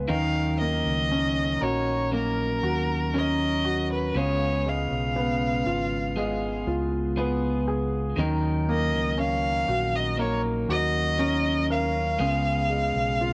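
Heartbroken and melancholic, this slow pop ballad moves at 60 BPM in a straight 4/4 and sits in E-flat minor, cut from a longer piece. A bowed violin carries the melody from 0.1 seconds, played by a single up-front player with expressive vibrato, portamento and a smooth top end. Beneath it, a clear, polished baby grand piano plays the accompaniment, while a clean, picked electric guitar, compressed and warm, spins arpeggios. A fingered electric bass anchors the low end with a round, punchy, dark tone that sounds direct and amped. The harmony alternates between Ebm7 and Db7, and the piano, guitar and violin carry the soft grain of cassette tape, with plate reverb adding sheen to the piano and violin inside a modest booth ambience that gives the whole a homemade intimacy.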